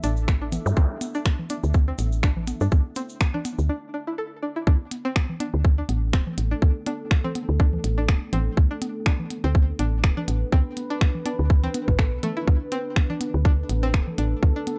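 Swung sixteenths at 123 BPM in 4/4 drive this sparse, hypnotic slice of minimal techno, cut from a longer piece and opening on a D5 chord. A tight, overdriven electronic kick sits up front from 0.3 s, while a clicky kit of finger snaps and hi-hats, also overdriven and re-recorded in a small room, ticks alongside analog congas with digital delay in the background and a grainy acoustic cabasa that drops out at 3.7 s. Underneath, a woody, round FM bass with a fast attack and mellow decay pumps against the kick. Above it, a twangy, string-like resonator pluck carries the riff with a bright sawtooth edge, a filter sweep, chorus and digital delay. A deep, moody ambient pad of detuned sawtooth unison and sine sub-octave swells in slowly with chorus and reverb, and a brief electronic zap flickers near the start. After a short break, the drop arrives at 4.7 s, and the whole track sits in a digital ambience.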